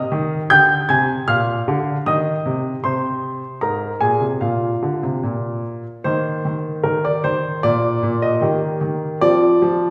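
A warm, natural baby grand piano plays alone, up front and with short sustain, through a graceful, cheerful classical-period sonatina excerpt in Eb major at 76 BPM in 2/4, moving from its opening phrase into a contrasting passage at 6.1 seconds, all carried by the wet reverb of a recital hall.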